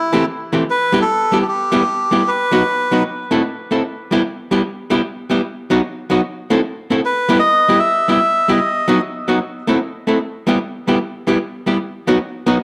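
A reedy, breathy melodica leads this driving, mischievous ska clip in E harmonic minor. It carries the tune up front in two short phrases, the first from the opening to 3.0 seconds and the second from 7.1 seconds, each trailed by a dub echo. Beneath it, a clean, picked hollow-body archtop guitar, miked and amplified, plays the accompaniment, also up front with its own dub echo. The guitar runs through to the end at 12.6 seconds over a repeating cycle of Em, B and Am. The tempo sits at 151 BPM in 4/4 with a swung eighth-note feel. A large studio reverb gives the dark, warm production a sense of space, and the clip is cut from a longer piece.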